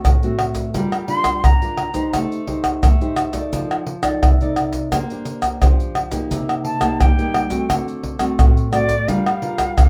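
A yearning, lively samba and choro cut in G minor at 86 BPM features an up-front, thumb-plucked classical nylon-string guitar with fresh strings moving through changes such as Gm7, Am7b5 and Bb69, over a deep surdo with maracas, pandeiro and tamborim, while an airy, expressive metal jazz flute with a soft attack and vibrato adds a second line briefly at 1.1 s and again from 6.6 s, with the band playing live together in a small, reverberant room.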